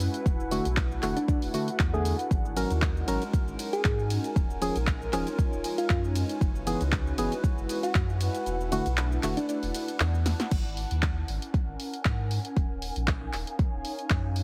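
A deep, layered electronic kick sits up front in this smooth, hypnotic deep house cut at 117 BPM in G# minor, driving a lightly swung 4/4 groove until it briefly drops out at 8.5 seconds. Beneath it, a full sub bass doubled at the octave holds down the low end with a deep, mellow tone, while a dry, overdriven analog drum machine adds a punchy snare, handclaps, hi-hat, ride, shaker and crash, capped by a drum fill at 10.3 seconds. Hollow, organ-like stabs with chorus and tape echo punctuate the sus chords moving through E, G#, D# and F#, and a gentle, keys-like synth lead with a round, struck attack traces a short melody in the same echoing space. Two pads glue it together: a soft, flute-like pad carries sustained chords with sidechain pumping until 10.5 seconds, and an ethereal, detuned pad drifts above with reverb, phaser and ensemble chorus, pulsing with the kick. The whole mix has a digital ambience with a heavily compressed, radio-like sound.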